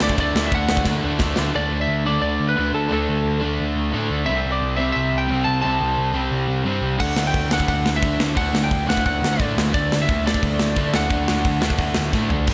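A big arena-style mix with a rolled-off top end and moderate hall reverb frames this rebellious, rowdy punk rock fragment: a slightly broken-up, compressed lead guitar carries the melody with slapback echo over a growly, amped bass and three background riff guitars (a crunchy one and a compressed overdriven one, both with slapback, plus a bright, double-tracked distorted one), while a tight, polished metal drum kit with bright cymbals sits up front, playing a fill at 0.9 seconds, dropping out at 1.4 seconds and returning at 7.0 seconds.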